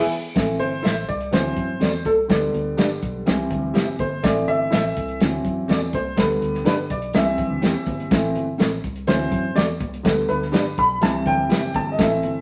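Urgent, passionate 1960s-style soul cut from a longer piece: the band hits an accent at the start, then the upright piano takes a solo from 0.4 s over a cycling Am, D7, G/D, C progression. The piano sits up front with a woody, slightly detuned tone and audible action noise, while a dark, clean electric guitar adds fingered stabs until 11.6 s and a foam-muted, round electric bass anchors the low end. A tight soul kit with a medium-tuned snare drives the groove, joined by very quiet, high-tuned congas and a jingly tambourine far in the background, all bathed in a wet studio reverb.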